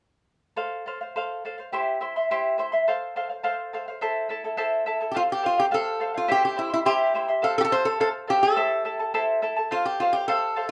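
A lap resonator guitar carries the melody with a metallic, nasal slide tone picked with fingerpicks, sitting up front from 5.1 s to the close at 10.7 s. Beneath it, a mellow, shimmering charango plays fingerpicked accompaniment on its double strings, some of them octave-doubled, starting alone at 0.6 s and staying prominent throughout. This is wistful, melancholic Andean folk at 105 BPM in a straight 2/4, cut from a longer piece and tuned slightly sharp to A4 = 441 Hz. The harmony circles through F, C and A minor, first with the charango alone and then again once the slide melody joins. A short, wet studio reverb gives the small acoustic ensemble a close, intimate room sound.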